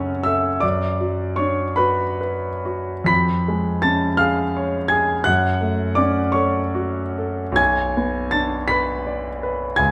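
A clear grand piano carries this short fragment of a romantic nocturne entirely on its own, placed up front with an intimate, natural presence in which the noise of its action is audible. The mood is melancholic and yearning, with the music moving in 6/8 that breathes freely in rubato. The piano spans a broad register from B1 to B6, drifting through a brooding minor-key progression that passes through F#m, Bm/F#, C#7/E# and back to F#m before settling on G#dim/B at 7.6 seconds. A moderate recital hall reverb surrounds the instrument, lending a sense of space around its tone. Cut from a longer piece, the passage lasts just under 10 seconds and feels like a breath from a larger, introspective statement.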